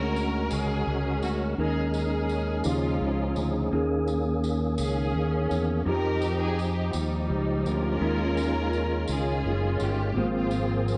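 Rolling in a straight 6/8 at 56 BPM counted in dotted quarters, this slow, jubilant and hopeful gospel passage sets a lush, bowed string section carrying the melody with smooth vibrato over a mellow, slightly out-of-tune tine electric piano in the background, a fat, lightly overdriven tonewheel organ holding percussive sustained chords through a slow rotary speaker and chorus vibrato, a punchy, up-front fingered electric bass, and a jingly, compressed tambourine entering at 0.2 s, the mix sitting in a moderate scoring-stage reverb with a worn, warbling cassette-tape sound and dull, capped highs as the harmony moves from Bb7alt/D through suspended Eb chords and Fm9 to a closing Ab69.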